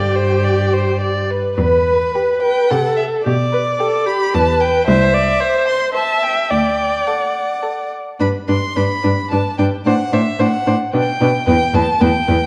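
Cheerful and lively, this brief passage from a quick classical-period movement for string quartet moves at 109 BPM in 3/4 with a rubato feel, settled in G major. A rich, focused first violin carries the melody high above the ensemble, its vibrato sung with a smooth top and placed up front. Beneath it the second violin adds a gentle line with a soft attack, portamento and expressive vibrato, while the up-front viola fills in the accompaniment with its own sliding, warm-hued phrasing. The clear, intense cello anchors the bass, its bowed tone clear yet smooth on top. Harmonies pass from Gsus4 through Em, C and D before the music shifts into a new section at 8.2 seconds, returning to G by way of D7/A. A moderate scoring stage reverb surrounds the players, and a worn, warbling old cassette tape quality lends the whole sound a gently drifting pitch.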